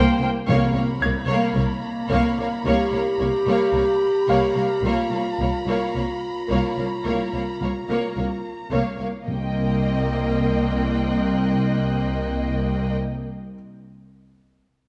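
A slow, straight 4/4 pulse at 56 BPM underpins this tense, uneasy suspense cue in C phrygian, cut from a longer film score, where bowed string sections hold a Bbm/C chord: a distant, focused violin melody and a lush second violin line sit over a portamento viola accompaniment, while a warm double bass and a close cello section share a low C2 bass, and a high, expressive violin texture shimmers above from 0.5 seconds. A mellow solo clarinet adds a classical second line from 1.6 seconds, a bright, brilliant vintage grand piano glimmers in the background until 9.3 seconds, and calf-headed timpani with medium mallets rumble near the start and return at 9.3 seconds for the closing section. The whole is bathed in a moderate scoring-stage reverb and coloured by worn, warbling cassette tape with a wavering pitch drift.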